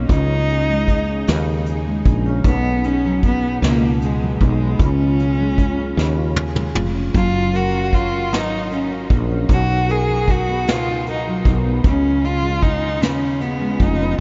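A dreamy, reverb-soaked sound with a huge ambient space and a softened top end opens this excerpt from a longer tender, romantic pop ballad in a slow six-eight at 51 BPM, tuned slightly sharp at A4 = 441 Hz. A rich, focused cello carries the melody up front, bowed close by one player with vibrato and a tape echo trailing its lines. Beneath it, a dark, double-tracked fingerpicked steel-string dreadnought guitar spreads the accompaniment, while a woody fretless electric bass adds a round, growly low end with a hollow-body character. A vintage brush drum kit sits up front with a natural studio-room feel, its medium-tuned snare and tight kick played with brushes, and a drum fill runs from 6.0 to 7.1 seconds. The harmony moves from C#sus2 through G#m7/B, C#, F# and Bmaj7 before settling on C#7.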